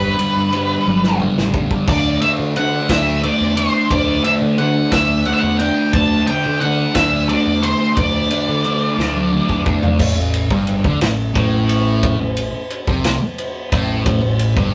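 A rough, tube-saturated rehearsal-room recording with a small-room ambience carries this mysterious, hypnotic psychedelic rock excerpt in 6/8, where a double-tracked, phaser-treated fuzz guitar riff and a punchy, overdriven fingered electric bass run throughout beneath a dark octave-fuzz lead guitar melody that stops at 9.6 seconds, while a gritty raw garage drum kit, with a rolled-off top and a pumping room sound, plays fills before the harmony moves to Am at 10.0 seconds.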